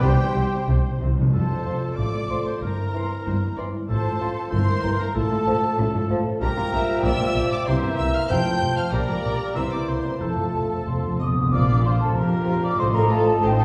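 A lively, spirited classical-period orchestral movement in F major at 95 BPM in 2/4, cut from a longer piece, opens with nearly the full ensemble at once: smooth, vibrato-rich violins carry the melody over an intense second violin line in the background, pure flutes and a soft-attack oboe, focused violas, a mellow, distant horn section holding chords, and expressive cellos with portamento beside clear double basses, while timpani with medium mallets add fills at 0.7 and 10.2 seconds, a roomy bassoon joins at 1.7 seconds, and a recital-hall reverb places the orchestra further back in the room as the harmony moves through F, C7 and Gm7/Bb.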